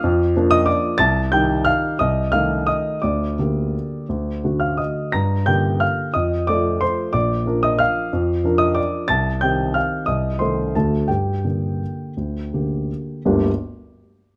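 A grand piano alone opens a nostalgic, elegant classical waltz in G minor, its tone intimate and up front with short sustain and audible action noise, heard through close, detailed microphones and light reverb. In flexible rubato at 162-193 BPM in 3/4, the piano ranges from G1 to Bb6 across harmonies moving through Bb, Cm, Adim/C, Gm/D and D before settling on Gm at 5.1 seconds and again at 11.1 seconds. Cut from a longer piece, the passage reaches a new section at 13.2 seconds and the piano stops at 13.5 seconds.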